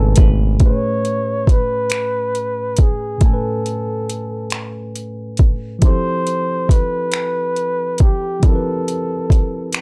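Slow six-eight R&B with an intimate mood, led by an up-front mellow flugelhorn singing a jazz-style melody with vibrato over a worn, slightly out-of-tune tine electric piano, while a dark, hollow-body guitar murmurs in the background and a smooth, sawtooth synth bass with portamento and tube saturation sound only until 1.2 s and 0.6 s respectively, soft-kicked electronic drums with metallic hats and finger snaps enter at 0.2 s, the harmony moves from Amaj9 to Fmaj9 at 5.8 s, and the dry, gritty recording keeps everything close.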